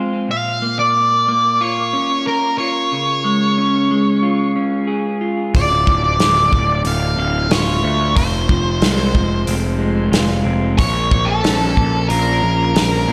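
In a straight 4/4 feel, this brooding, dark quiet-loud alternative rock excerpt opens on bright, twangy arpeggios from an electric guitar through a small old amp with tape echo, joined at 0.3 seconds by a distorted octave-fuzz lead guitar melody with slapback echo, before a growly, punchy fuzz bass with overdrive and a loose indie drum kit with a tight kick and rolled-off top arrive at 5.5 seconds, the whole piece bathed in lush hall reverb for a big arena sound.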